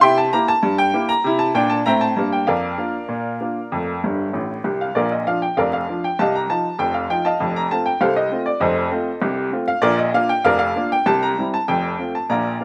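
Dry, open-air sound with a vinyl crackle frames this playful, cheerful ragtime excerpt in Bb major at 98 BPM in a straight 2/4, where a clear, woody upright piano plays solo and up front, with a slapback echo, from F1 to C6 and tosses in a brief fill at 4.0 seconds before moving into a new section at 4.9 seconds.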